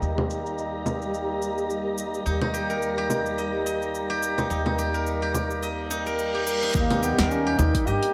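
Organic downtempo with a mystical, earthy mood, cut from a longer piece and swung gently on the sixteenths in 4/4. A bright, silvery steel-string zither played with fingerpicks rings out up front in arpeggios, its tone roughened by vintage 12-bit sampler grit and digital delay, while a reedy, breathing hand-pumped harmonium pulses underneath with sidechain pumping, a low-pass filter and delay. A woody, dark pizzicato upright bass anchors the low end, and a deep house drum kit of cabasa, congas, hi-hat and a punchy snare sits up front, overdriven and filtered, with a filter sweep running across the drums until 6.7 seconds. A blurred, detuned granular cloud pad and an airy, wind-like noise texture with chorus hover in the background, as a downlifter and reverse cymbal lead toward the change, the reverse cymbal sounding from 5.9 seconds. At 6.7 seconds an overdriven electronic kick drum lands and a solo duduk enters with a folk-style melody full of vibrato and scooped notes, all inside a bright 1980s-style digital production bathed in a wet plate reverb.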